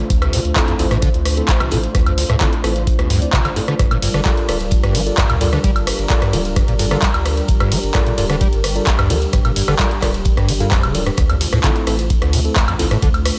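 This acid house excerpt runs at 130 BPM in a straight 4/4, tuned to A4 = 436 Hz, with a gritty, hypnotic mood. A squelchy, resonant square-wave acid bass carries the riff, its tube saturation, ensemble chorus, tape echo and filter sweep giving it a saturated bite. Beneath it a round sine sub bass holds sustained tones, while above it a dark, detuned sawtooth pad sustains chords, both pumping against the sidechain, the pad's slow attack and long release adding a moody depth. A deep, tape-warm electronic kick drives the groove alongside a punchy analog drum machine of handclaps, hi-hat, ride cymbal, rim click and woodblock re-recorded in a large room, while a very quiet acoustic jazz kit adds a smooth hi-hat and medium-tuned snare from a small room. A mellow tine electric piano sits in the background with clean stabs roughened by 12-bit sampler grit and tape echo. The harmony moves from Dm7 to Gm7 at 3.8 seconds and back to Dm7 at 11.2 seconds, in a dry mix with little reverb.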